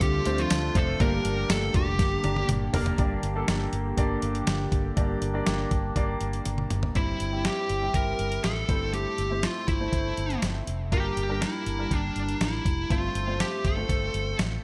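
A bright, 1980s-style digital production with moderate plate reverb frames this urgent, moody pop excerpt at 121 BPM in G dorian. A gritty, compressed sampler-style drum kit sits up front, with a round, foam-muted fingered electric bass and an intimate concert grand piano, audible action noise and lush chorus, running throughout, while a dark fuzz guitar carries the melody with distortion and delay. The guitar opens alongside a very quiet, woody buzzing marimba, punchy sawtooth polysynth stabs and a brassy, detuned analog pad holding chords in the background until 6.9 seconds, then returns at 7.0 seconds as the harmony moves from Dm7 and Gm through C/G, Am/G and F/G, with two drum fills along the way.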